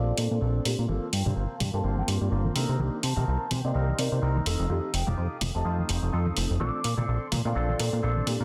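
Swung sixteenths at 126 BPM in 4/4 drive this sunny, funky filtered disco house excerpt in F mixolydian, where a punchy, up-front analog bass with a fast filter pluck anchors a dark, mellow grand piano through a phaser, a bright, twangy clean electric guitar riff roughened by 12-bit sampler grit, a distant bowed violin section holding smooth chords, and an airy, hollow flute melody with delay from 1.1 to 7.1 seconds, while a tape-tinged electronic hi-hat enters at 0.2 seconds and acoustic maracas and congas sit in the background, with a filter sweep running throughout and a dense, heavily limited master touched by light reverb.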